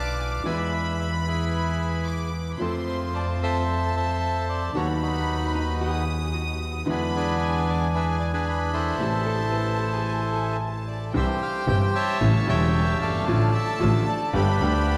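A reedy, dark bandoneon sings the melody over a bowed double bass, a bright grand piano and a close, earthy violin section in this sultry, dramatic rubato tango excerpt at 112 BPM in A harmonic minor. A dark, clean hollow-body jazz guitar adds a picked line in the background from 5.6 to 11.1 seconds, and at 11.1 seconds the music turns to C major as a veiled, con sordino chamber string section adds very quiet stabs, all within a vast, echoing cathedral space.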